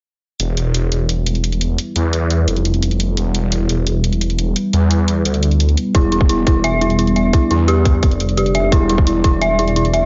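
A light digital reverb with a dulled top end frames this dark, futuristic technical drum and bass fragment, which opens at 0.4 s with a thick, swirling phased saw bass and a layered electronic hi-hat; a deep, moody pad of sustained chords arrives at 1.2 s, and at 5.9 s a tight, up-front kick enters alongside an eerie, inharmonic synth bell playing chorused, delayed arpeggios, the bell and the pad both pumping with sidechain.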